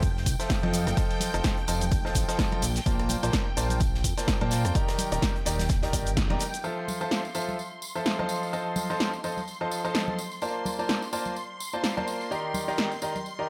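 A bright grand piano leads this uplifting, feel-good piano house excerpt in F major, entering at 0.4 seconds with a brilliant, intimate riff whose hammer action is audible, its long sustain pumping with the sidechain and trailed by a digital delay. Underneath, a shimmering vintage string machine holds high violin chords through an ensemble chorus, pumping alongside a fat, detuned sawtooth bass with a filter sweep. At 127 BPM in 4/4 with a swung sixteenth-note feel, a punchy, tape-warm kick and an analog drum machine of hi-hat, rim click, shaker and snare drive the groove. Close, dry tambourine and congas and a very quiet loose acoustic kit fill out the percussion in light reverb. The chords cycle through Fmaj7, F7, Bbmaj9 and Ebmaj7 twice, and after a band accent the kick, bass and acoustic kit all drop out by 6.5 seconds, leaving piano, strings, drum machine, tambourine and congas for the second half.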